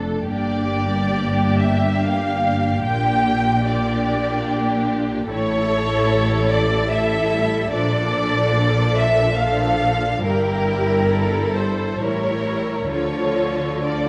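A rich, up-front violin section enters at 0.3 s with a second line that sings over this slow, yearning string-orchestra movement in 3/4, its rubato pulse drifting between 63 and 76 BPM. Beneath it, another violin section carries the melody with soft attack and expressive vibrato, and violas fill out the accompaniment with smooth, even tone. Cellos sit in the background while a close double bass section adds portamento, and a scoring-stage reverb of 2.0 s gives this elegiac passage, cut from a longer piece, a lush glow as the harmony moves from Gm through Bbmaj7 and A7b9 to Dm.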